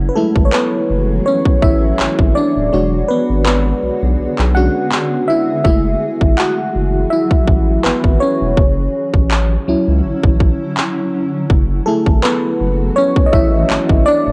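Moody and longing, this short contemporary R&B excerpt in F# minor moves at 82 BPM with a light 16th-note swing. A glassy, bell-like FM electric piano with chorus and cassette warble takes the lead over a deep, thick saturated sub bass and a cloudy, evolving granular pad that pumps under sidechain and carries its own reverb, while a tape-warm trap kit of handclaps and a hard-clipped kick sits up front. The kick drops out from 2.7 to 5.6 seconds as the chords cycle from F#m9 through E13 and Dmaj9/F#, all captured as a dry home recording on cassette.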